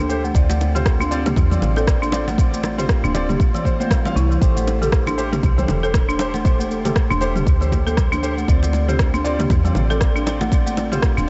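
This driving, earthy afro house excerpt at 118 BPM opens with a dry, rustic hard-mallet marimba spinning arpeggios alongside felt-muted upright piano stabs, mellow and intimate with audible action noise and lush chorus, over a woody, dark FM bass, while an up-front, tape-warm electronic kick, an overdriven deep house kit of rim click, shaker and toms, and very quiet close congas and bongos pulse through a dreamy, reverb-soaked mix over Dm7 and Am7.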